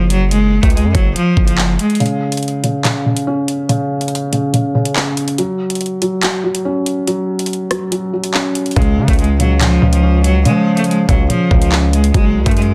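Ominous and cold, this half-time drill excerpt at 142 BPM opens with a biting, bright cello melody filtered and trailed by digital delay over a saturated, distorted 808-style bass, both dropping out by 2.0 seconds for a break carried by the knocking kick, metallic hats, handclaps and rim clicks of a gritty 12-bit drill kit and a dark, felt-muted upright piano with audible action noise, before cello and bass return at 8.8 seconds within a dense, heavily limited mix touched by light small-room reverb.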